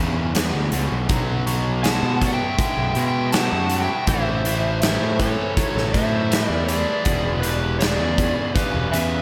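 A straight 4/4 groove at 80 BPM drives this gritty blues rock and southern rock fragment in E mixolydian, cut from a longer piece. The big acoustic drum kit sits up front from 0.3 seconds, with a punchy kick, a medium-tuned snare and hi-hat ringing in a large room. Beneath it, a fuzz-soaked picked electric bass, bright and punchy, runs the low end from the start, while a cranked stack guitar, double-tracked and overdriven, grinds out the riff over chords moving from E7 through B5 and A back to E7. At 1.8 seconds a dark, overdriven slide guitar takes the melody high above. Alongside it, a smooth overdriven lead guitar plays a second line from the background, carried by slapback echo and analog delay. A lush hall reverb gives the whole band a big arena sound.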